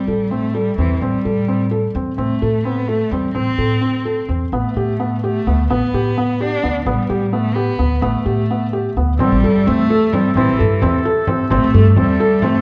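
A restless, urgent pulse in 5/8 at 257 BPM in eighths drives this short piece of contemporary chamber music in A minor, cut from a longer work. A rich, focused bowed cello carries the melody with vibrato over soft, mellow arpeggios from a felt-muted upright piano and a woody pizzicato upright bass, all up front, as the harmony moves from Am7 to Gadd9/A. At 9.2 seconds a tight woodwind section adds soft-attack sustained chords and a frame drum joins in the background, the whole heard through a moderate recital hall reverb and the warbly pitch drift of worn cassette tape.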